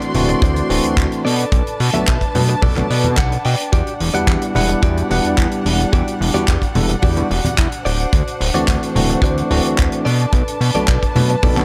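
Nu-disco at 109 BPM in E minor with a groovy, sensual feel, built on a fat, detuned sawtooth analog bass up front, an up-front tight kick and a small-room funk kit with handclaps and hi-hat, soft-handed congas in the background, a bell-like tine electric piano and a bowed string section with vibrato, both pumping with sidechain, and a bright, clean, direct guitar riff with chorus, 12-bit sampler grit and delay that adds a fill at 2.6 seconds, all over chords moving from D7 through Bm7 to Em9 in a small room.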